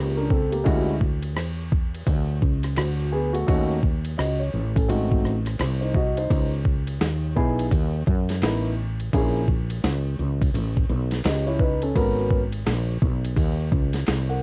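Lightly reverberant home-cassette sound with vinyl crackle frames this relaxed, warm jazz-hop excerpt at 85 BPM with a swung 16th-note feel, where a dark, mellow concert grand piano with tape coloring voices rich chords such as A#m69, Dmaj9#11 and G#m11, a woody, growly fretless electric bass sits round and up front, and a gritty, compressed sampler-style soul kit with tape grain, a thumpy kick, medium-tuned snare, rim click, hi-hat and ride enters at 0.3 seconds.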